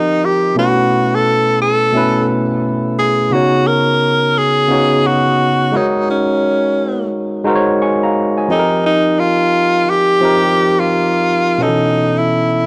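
R&B at 87 BPM in 4/4 with a swung sixteenth-note feel and a smooth, late-night mood, this short excerpt cut from a longer piece runs about 12.7 seconds. A bright, close-miked tenor saxophone carries the melody up front in a pop-style solo, singing with vibrato and scooped notes between Db4 and Bb4. Beneath it, an overdriven tine electric piano played through a combo amp supplies gritty, barky accompaniment across a broad span from B2 to Db6, also placed up front. Both parts sit in plate reverb within a moderate studio ambience, and the whole recording carries the worn, warbling character of old cassette tape with a warbly pitch drift. The harmony moves through suspended ninth chords, opening on F9sus4, passing through B9sus4, Db9sus4 and Ab9sus4, and returning to F9sus4 at 8.5 seconds before landing on B9sus4.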